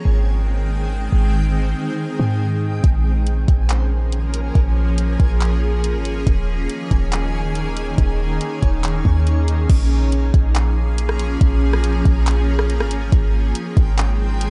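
A bright, shimmering ambient pad with chorus and an octave-up sheen opens this hazy, ethereal cloud-rap excerpt in Bb dorian, alongside a faint reversed, detuned texture with granular reverb tails and a deep, boomy 808-style sine bass that arrives almost at once. At 2.8 seconds a soft, up-front electronic R&B kit enters with kick, hi-hat, rim click, handclaps and crash, setting a half-time feel at 140 BPM while the pad pumps against the sidechain. The production is dark and digital, with chords moving from Abmaj7 through Bbm7 and Eb7sus4, returning to Bbm7 before settling back on Abmaj7.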